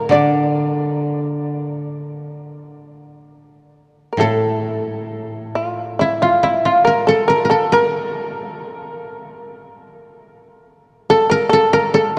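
Japanese traditional chamber music in D hirajoshi unfolds with a still, solitary mood, moving in a free, rubato 4/4 that hovers between 62 and 73 BPM. A mellow, woody koto carries the melody, played with fingerpicks and sitting dry and up front in the mid register. Beside it, a fretless shamisen plucked with a plectrum adds a second line of powerful, buzzing, percussive tone, also placed close to the listener. A second koto, played with fingerpicks and woody, supplies a low accompaniment until about 6.8 seconds, after which the melody and second line continue on their own. The whole passage bathes in a long cathedral reverb and carries the worn, warbling character of old cassette tape, with a warbly pitch drift. This short excerpt is cut from a longer piece, with a shift into a new section at 4.2 seconds.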